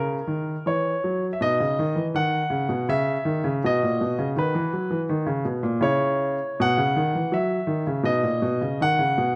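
A radiant, flowing classical baroque-style suite movement in B major for solo grand piano, moving in a rubato 3/4 at about 81 BPM across this 9.4-second fragment, its polished, present tone sitting up front under close, detailed microphones with light reverb as the harmony passes from F#7 through B and C#madd9 to C#m before returning to B.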